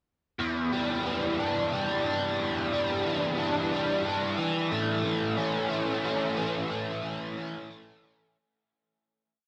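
Set in a slow 6/8 with a straight feel at 60 BPM counted in dotted quarters, this short rock piece moves in a hypnotic, dark mood in E dorian. A single biting overdriven electric guitar carries everything as a solo from 0.4 to 8.4 seconds, its double-tracked picked arpeggios sitting up front in the mix and ranging from E2 to D4. A flanger colors the guitar's warm, overdriven tone, while a huge ambient reverb with an 8.5-second decay soaks the sound into a dreamy, cavernous haze. The harmony rests on Em7 before shifting to A/E at 4.4 seconds. A fade-out begins at 6.4 seconds and carries the piece to its close.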